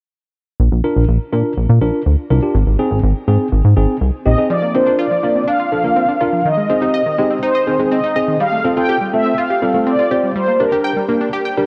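A mellow synth brass carries the melody from 4.3 seconds, its detuned, brassy tone colored by vibrato, chorus and shimmer reverb, in this bright yet wistful pop fragment cut from a longer piece. Before it, a glossy, dark chorused synth bass holds the low end from 0.6 until 4.4 seconds. A worn, slightly out-of-tune tine electric piano accompanies, and a round, evolving analog pluck spins arpeggios through chorus, shimmer reverb and digital delay, all set in a lush hall and colored by the warbling pitch drift and dulled top of old cassette tape.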